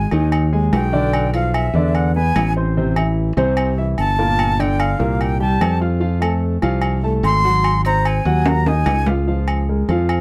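Lightly reverberant and dark in tone, this sunny, lively Afro-Cuban jazz excerpt moves at 147 BPM in a straight 4/4, tuned slightly flat to A4 = 437 Hz. A breathy, reedy concert flute with crisp attack and vibrato carries the melody up front until 9.1 seconds, over a polished, present baby grand piano comping through changes such as Am7, Gm7, F and Ab7, while a growly, punchy fingered electric bass sits bright and direct in the low register. Ringing agogo bells and metal-shelled timbales drive the percussion from 0.1 seconds, with a drum fill between 8.5 and 9.3 seconds leading toward a closing Db6.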